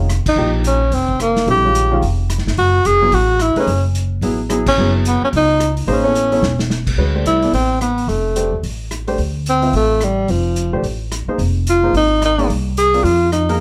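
This cool, intense modal jazz excerpt opens on piano and woody, thumpy pizzicato upright bass with a band accent at 0.2 seconds, swinging at 218 BPM as a vintage drum kit with dark cymbals, a punchy kick, snare, hi-hat, rim clicks and crash sits in a small, pumping room. Up front, a breathy tenor saxophone with light vibrato and scooped notes carries the solo melody through plate reverb, over an intimate baby grand whose action noise is audible. After a drum fill at 6.4 seconds the harmony settles into D dorian at 7.0 seconds, moving from Dm7 to Fm7, with light reverb around the ensemble.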